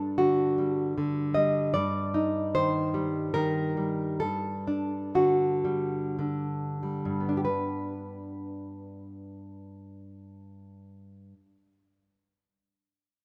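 In a 3/4 with free, rubato timing, this short passage drifts between 44 and 78 BPM, slowing down from 0.6 to 7.5 seconds. It is a romantic piece for solo classical guitar, intimate and wistful in mood, cut from a longer work. The fingerpicked nylon-string guitar plays alone throughout, ranging from G2 to Eb5, with a dark, full-bodied tone that sits up front. The harmony moves from G5 through Cm/G and D/G before settling on G at 7.5 seconds, where a new section begins. A moderate, lush hall reverb surrounds the guitar, though the rough home-demo mix keeps the sound unpolished.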